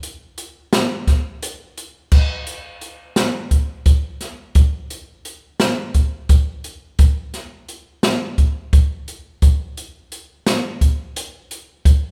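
An open jazz drum kit sits up front in this short progressive instrumental cut, playing from 0.0 to 12.0 seconds with crash cymbal, hi-hat, kick drum and snare drum. The mood is driving and brooding, set in an odd 7/8 metre at 172 BPM counted in eighths, with a straight feel. The acoustic kit has dark cymbals, a medium-tuned snare and a boomy kick, captured in a studio room with light reverb. A brief opening passage gives way to a new section at 2.1 seconds, which carries the music through to the end of this fragment of a longer piece.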